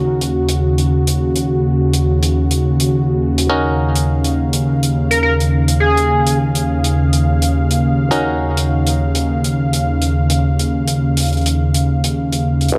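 A smooth, detuned analog pad sits up front in this playful, gritty glitch hop excerpt, holding sustained chords on an Ebm7 harmony with chorus and a vintage 12-bit sampler grit. Beneath it, a bright, twangy clav played through a combo amp punctuates the groove with percussive, stringy stabs trailed by dub echo. An acoustic hi-hat, recorded in a studio room and sitting mid-forward, enters at 0.2 s over a 4/4 groove with a swung sixteenth-note feel. At 5.1 s a tearing, edgy sync lead cuts in briefly with a detuned, vibrato-laced melody, coloured by chorus, sampler grit and dub echo. Just as the passage closes at 12.7 s, an aggressive, saturated synth bass with a resonant filter sweep lands on a single low note, all set in light digital reverb.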